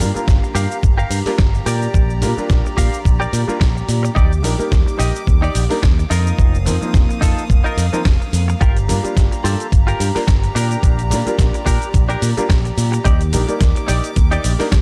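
Nu-disco at 108 BPM with a light 16th-note swing, this groovy, sensual cut rides a thumpy, up-front electronic kick, entering at 0.3 seconds, and a punchy picked bass with an envelope filter and sidechain pumping, while a dusty soul sampler-style kit adds a fat snare, hi-hat and cabasa. A twangy, clean direct-recorded electric guitar plays a riff through analog chorus, 12-bit sampler grit and tape echo, as a clear concert grand piano with short sustain and tape echo accompanies, and an earthy chamber string section holds bowed chords with light vibrato and sidechain pumping. The chords cycle through Gm7, Bb6, Ebmaj7 and F7sus4, and the sound is dry and gritty with digital ambience and lossy compression artefacts.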